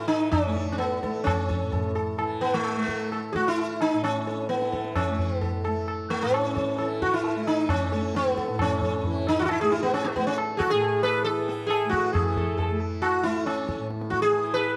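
A sitar and tanpura open this devotional, radiant Hindustani passage in raga yaman on A, cut from a longer piece, with a low-tuned tabla joining at 0.1 seconds in a straight 4/4 that speeds up from around 128 toward 139 BPM. The up-front sitar carries the melody with a round, plectrum-plucked, buzzing tone and shimmering sympathetic strings, while the softly plucked tanpura holds a bright, shimmering drone beneath it and the compressed, saturated tabla gives short-ringing strokes. A moderate recital-hall reverb and a dark production surround the trio, which moves into a new section at 12.1 seconds.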